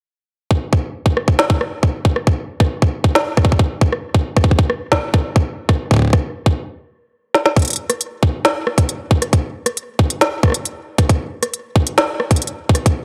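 A tight, tape-warmed electronic kick drum sits up front in this wistful, playful IDM excerpt at 136 BPM in straight 4/4, re-recorded in a large room and entering at 0.5 seconds. From 1.2 seconds an overdriven, organic-sounding electronic kit joins with a woody snare, rim clicks and smooth hi-hats. The groove stops at 6.7 seconds, a drum fill at 7.3 seconds leads into a second section, and the dry, gritty recording carries only light reverb.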